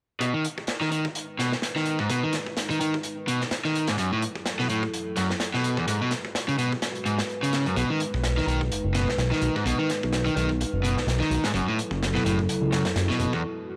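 Swung sixteenths drive this playful, energetic breakbeat cut at 127 BPM in 4/4 and B mixolydian. A crunchy, saturated drum kit with a punchy kick, medium-tuned snare and hi-hat and a rolled-off top sits under an up-front overdriven electric guitar riff, picked and compressed through a low-pass filter and analog delay. A deep, moody analog pad holds detuned sustained chords with chorus and sidechain pumping as the harmony moves through B6, F#m7 and G#m7. A fat, thick sawtooth bass with a filter sweep joins at 7.8 s, and a short break arrives at 13.4 s, all in a dry, gritty hardware sound with transformer saturation and light small-room ambience.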